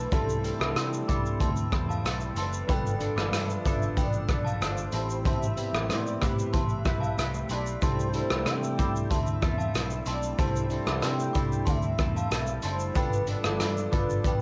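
A velvety synth lead carries the melody from the start over twangy, bright electric guitar, a hollow soft pad and a picked, foam-muted electric bass in this dreamy, hazy bedroom-pop excerpt at 93 BPM in C major, with the chords moving through C6, G9, Am9 and back. A gritty garage drum kit with punchy kick, hi-hat, rim click and shaker sits up front, joined by a chiming, inharmonic FM synth line with tape echo and a mellow, flute-like tonewheel organ through a slow rotary speaker. Chorus and cassette-tape wear on several parts, with warbly pitch drift on the guitar, give the small-room home recording its rolled-off, vintage haze.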